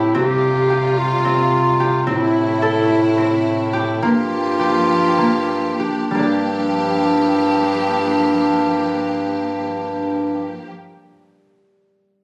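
From the outset, a roomy, soft-attacked bass clarinet carries the bass up front while a mellow clarinet traces a smooth second line, a focused, lush bowed string section with vibrato holds sustained chords, and a fingerpicked concert harp rings out arpeggios, this restless, hypnotic piece of contemporary chamber music moving in 7/8 through Csus4, Am and Gm7 and slowing between 2.1 and 6.1 seconds, in a phone-recorded fragment of a longer work touched by light reverb.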